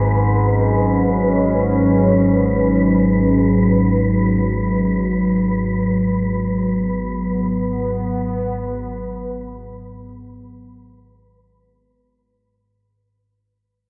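A sweeping, resonant pad sits up front in this dark ambient drone, holding detuned sawtooth chords that rise out of a slow attack, bloom with a filter swell and linger on long releases under a chorus sheen. Beneath it, a nasal analog drone built from sawtooth and pulse waves anchors the low end with an evolving pulse-width shimmer, also carried on chorus and placed close to the listener. Higher up, a breathy, wind-like tuned noise texture with a sine core drifts quietly through its own reverb, adding an airy chill. The three layers sustain a single F#sus2/G# chord in free time, giving the moment a desolate, ominous stillness. A cavernous cathedral reverb and a dark, warm production wrap the sound, and this fragment of a longer piece begins fading out at 3.0 seconds, dissolving by about 13.2 seconds.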